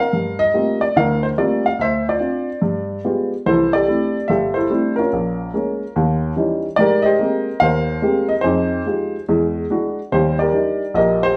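Swinging eighths at 144 BPM in 4/4 carry this smoky solo jazz fragment, tuned to A4 = 444 Hz, where an intimate, natural-sounding baby grand piano with audible action noise and short sustain sits up front, spans G1 to F5 through rich chords such as Gm11, C69, Abmaj9 and E9, and moves into a new section at 3.5 seconds, heard within a wet studio reverb from further back in the room.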